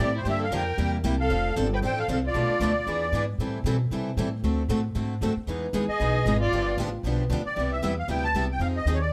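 A swung 4/4 pulse at 230 BPM drives this lively, playful excerpt of acoustic string swing in C major, with a woody, thumpy pizzicato upright bass on gut strings up front and two picked steel-string acoustic guitars comping beneath, one bright with fresh strings and finger squeak, the other warm. A reedy, shimmering musette accordion carries the melody up front, falling silent at 3.3 seconds and returning at 5.9 seconds, while a single bowed violin adds a smooth second line with vibrato and portamento. The moderate club reverb gives the ensemble a lively room sound as the chords shift toward a new section at 7.6 seconds.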